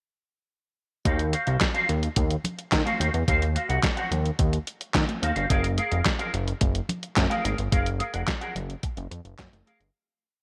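Early-eighties boogie funk at 108 BPM in Eb dorian, a short, late-night and slick breakdown where all four parts enter together at 1.1 seconds, moving from Ebm69 to Gbmaj9 before a fade-out from 7.7 seconds. A clean 12-bit drum machine sits up front with a thumpy kick, a fat snare layered with handclap and hi-hat in a four-on-the-floor boogie beat bathed in gated reverb, while a thick, nasal, detuned analog bass plays a saturated, syncopated line with chromatic approach notes and a plucky filter attack. A dark, choppy sixteenth-note electric guitar through an envelope filter and ensemble chorus adds the riff, and very quiet, high-tuned congas with hard hands slap on two and open up on four, all in a light reverb.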